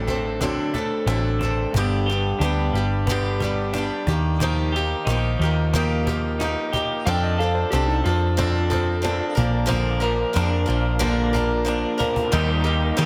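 Folk rock with a heartland rock streak, this dusty, reflective excerpt moves at 90 BPM in a straight 4/4, cut from a longer piece. A bright, boxy picked acoustic guitar in a swing style sits up front beside a twangy, slightly broken-up lo-fi electric guitar riff, both trailed by dub echo in the echo-heavy mix. Beneath them sit a round, punchy hollow-body bass up front and a faint, woody cajon with a drum fill at 11.7 seconds, while a dark slide guitar surfaces in the background and a clean tonewheel organ with key click and slow rotary shimmer adds very quiet sustained chords from 7.1 seconds, all within light small-room reverb.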